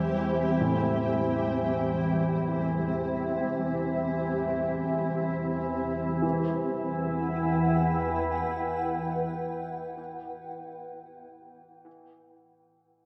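Unfolding in free time, this ominous, unsettling dark ambient drone sets a nasal, organ-like drone with ensemble chorus and a blurred, detuned granular cloud pad up front, the drone holding steady while the pad's slow-attack sustained chords shift from C to Emadd9 at 6.2 seconds. A bright, flickering grainy texture glints in the background until 6.3 seconds, while a polished baby grand piano enters at 0.6 seconds with short-sustain arpeggios through tape echo. A wet spring reverb soaks the echo-heavy mix of this unsettling fragment from a longer piece.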